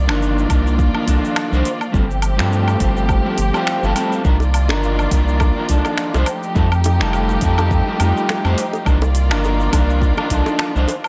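Light digital reverb gives this relaxed, smooth sunset chillout excerpt a soft sheen, as veiled con sordino strings hold dark sustained chords over a round, up-front analog bass with tube saturation, while a slightly broken-up electric guitar with delay adds fingered accompaniment and a tape-warm deep house kit of metallic hats, cabasa, finger snaps and woodblock rides a deep electronic kick, with tight, high-tuned bongos joining in the background at 4.4 seconds.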